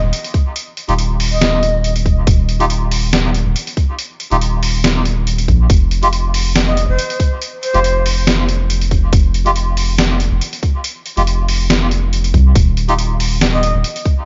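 A swung, half-time pulse drives this cavernous, heavy deep dubstep excerpt, where a tight, layered electronic kick and a gritty, pitched-down sampler-style kit of hi-hat and snare sit up front beside a round, soft sub bass, while nasal, reedy melodica stabs and bright bamboo shakuhachi phrases, first heard at 1.3 seconds, drift through dub echo in a small, lightly reverberant room with a dulled top end.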